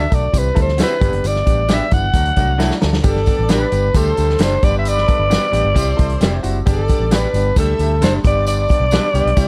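A raspy, gritty alto saxophone carries the melody up front over a round, punchy muted bass and slightly broken-up guitar stabs treated with lush chorus and analog delay, joined at once by a deep-toned grand piano, a tight vintage drum kit and a distant, jingly tambourine in this joyful 1960s-style soul cut in G major at 133 BPM with dark production and little reverb, where a drum fill at 2.6 seconds leads into a new section at 3.1 seconds as a very quiet, bell-like glockenspiel and a smooth, lightly vibrato string section add second lines.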